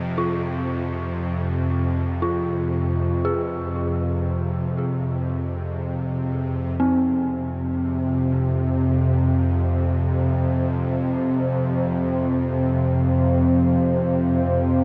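Ambient in free time, unsettling and cavernous, this excerpt from a longer piece opens on a tense, string-like bowed drone held up front with vibrato and a noisy edge. An eerie, inharmonic synth bell traces arpeggios from 0.2 seconds, its decaying tones coloured by chorus, tape echo and shimmer reverb. At 9.8 seconds a deep, moody pad with a sub octave adds sustained chords, all of it set in a huge, wet reverb with a dark, warm production.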